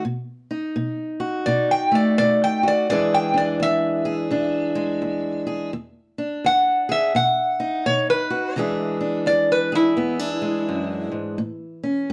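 A short, gritty excerpt of acoustic country blues, heard in a studio space with a brief, wet reverb that gives the two guitars a close, up-front presence. At a rollicking 85 BPM in 4/4 with a swung eighth-note feel, the piece sits in E mixolydian, moving from B7 to E7, touching B and E7 again, and landing on A near the end. A fingerpicked steel-string parlour guitar opens alone at 0.0 seconds and carries the accompaniment throughout, its boxy, warm tone spanning from low E2 up to G#4, with audible finger squeak on the strings. At 1.5 seconds a metal-body resonator slide guitar enters with the melody, played with fingerpicks and a steel bar, sitting higher in the E4 to G5 range and a touch louder than the accompaniment. Its bright, nasal, metallic voice is bathed in plate reverb and cuts through until it drops out at 11.1 seconds, leaving the fingerpicked guitar to finish out the clip by itself.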